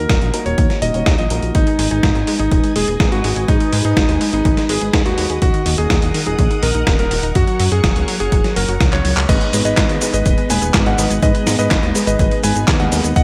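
A straight 124 BPM italo disco groove in 4/4 and G# minor drives this nostalgic, melodramatic excerpt, with a punchy, dry electronic kick and a gritty, compressed sampler-style kit of snare, hi-hat, handclaps, cabasa and crash under gated reverb, a glossy chorused synth bass, a vintage electric grand piano carrying the melody through digital delay, background grand piano stabs at 0.0 and again from 9.5 seconds, a detuned analog pluck arpeggiating with chorus and delay from 1.5 seconds, and a lush string machine holding chords, all in light reverb, as a drum fill and band accent lead into a new section at 9.3 seconds on G#m.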